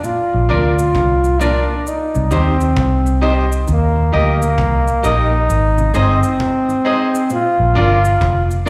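Heard through a club PA with light reverb and small-room ambience, this sunny, uplifting roots reggae excerpt has a swung sixteenth-note lilt. A pop-style solo trombone carries the melody up front with tape and slapback echo, and a dark, round, foam-muted fingered electric bass anchors it from 0.3 seconds beneath a very quiet, compressed fingered electric guitar playing arpeggios. From 0.5 seconds a clean, picked electric guitar with echo adds accompaniment and a brilliant, worn, slightly detuned upright piano with audible action noise adds stabs, over a woody, saturated cajon, a close, dry cabasa and a very quiet tonewheel organ with key click turning through a slow rotary speaker.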